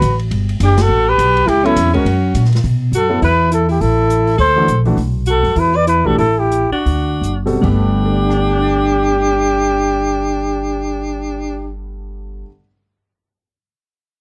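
A dry, close studio sound with a small-room ambience and a 1970s character frames this short, playful slice of small-group swing and bop, cut from a longer piece. A dark, vintage-toned trumpet carries the melody up front, its vibrato and scooped notes set against a bright, punchy alto saxophone that plays a forceful second line with the same jazz-style inflections. Underneath, a woody pizzicato upright bass with steel strings sits prominently, while an airy, polished drum kit with dark cymbals, a medium-tuned snare and a boomy kick supports the group until 8.4 seconds, with a band accent landing at 0.7 seconds. A clear concert grand piano with a deep low end enters at 1.6 seconds to accompany, and the band slows between 5.0 and 7.6 seconds before the harmony settles back on the opening major-seventh chord. The bass rings on after the horns finish, and the piano has the last word.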